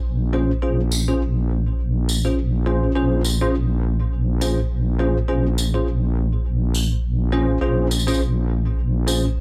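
A heavy, saturated wobble bass on a low Bb1 leads this playful, swaggering glitch hop excerpt at 103 BPM in Bb minor with a 16th-note swing, joined at 0.3 seconds by bright, clean tine electric piano stabs between Db4 and C5 treated with ensemble chorus and digital delay, and at 0.9 seconds by a dry acoustic tambourine, all over a single Bbm9 chord in a close, nearly reverb-free sound.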